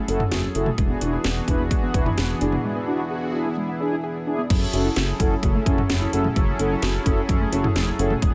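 A dense, heavily limited synth-pop excerpt in light reverb, driving and nocturnal at 129 BPM in F# minor, where a punchy, tape-warm house drum kit with cracking snare and metallic hats sits up front over a glossy chorused pulse-wave bass, a brassy, detuned synth brass, a shimmering pulse-width pad holding sustained chords, a soft round pluck playing arpeggios with chorus and delay in the background, and a faint electronic swell from 2.2 to 3.6 seconds, all moving between F#m7 and E7 before a break gives way to a new section at 4.5 seconds.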